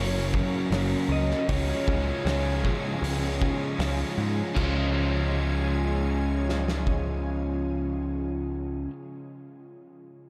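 A dreamy, reverb-soaked haze opens this short excerpt of wistful shoegaze and dream pop rock in Db major, moving at a slow 78 BPM in a straight 4/4 over a Gb to Db change. A crunchy overdriven guitar and a second warm, overdriven guitar, both picked, carry riffs, the first touched with subtle chorus and the second compressed and bathed in reverse reverb, while a bright, up-front picked bass anchors the low end and a soft, detuned organ-like pad with ensemble chorus holds sustained chords in the background. A slightly broken-up, lo-fi guitar through a small old amp sings a faint phased melody under diffuse delay until 3.8 s, and a loose acoustic drum kit with a punchy kick, pumping room and dark cymbals plays from 0.3 s to 7.0 s.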